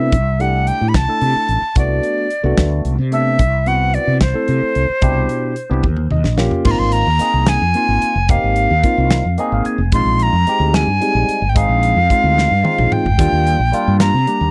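A dry, close recording in a 1970s studio style, with little reverb, frames this funky, slick excerpt of electric jazz fusion in a straight 6/8 at 74 BPM. A breathy, reedy flute carries the melody up front, its bright metal tone shaded by vibrato and tongued notes. Beneath it, a barky, clean tine electric piano colored by a phaser supplies lush extended harmonies, from C6 and Cmaj13 in C lydian to a shift into Ab lydian at 6.7 s, where Ab69, Bb9sus4 and Ebmaj9 follow. A mellow, round fretless bass with a lush chorus anchors the low end, while a polished, airy acoustic drum kit with bright cymbals, a medium-tuned snare and a tight kick drives the groove. Drums and electric piano both fill at 5.8 s to lead into the change of key, with further fills from each part later on.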